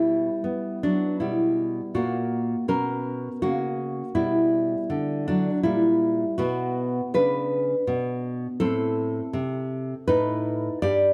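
A flowing triple metre with a rubato feel carries this short excerpt of a baroque-style classical dance, cut from a longer piece and played on solo nylon-string guitar. The mood is solemn, the guitar sitting up front with a full-bodied, deep tone and a finger squeak audible from its fingerpicked strings. It ranges from G2 up to D5, moving through minor-key harmony that passes from Em/B and F#/A# to a settling Bm at 4.2 seconds, then touches Edim/Bb before returning to Bm. Near the close the harmony shifts to Am and lands on B7/A at 10.1 seconds. A moderate recital hall reverb surrounds the instrument, and the production is dark and warm overall.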